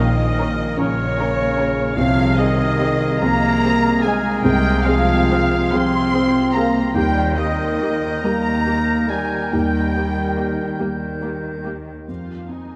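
In a slow, rubato 6/8 at 48 dotted-quarter beats per minute, this sorrowful, moving film-score excerpt moves through Bbm, Fm/C and Eb before settling on Fm7 at 12.1 seconds, set in a vast, echoing cathedral space. Con sordino violins carry a veiled, lush melody over a second muted violin line, a clear oboe, a clarinet and a distant, airy flute, while a felt-muted upright piano with audible action noise and hushed violas provide accompaniment. Mellow, roomy French horns hold sustained chords until 10.8 seconds, and dark, muted cellos and close double basses anchor the bass.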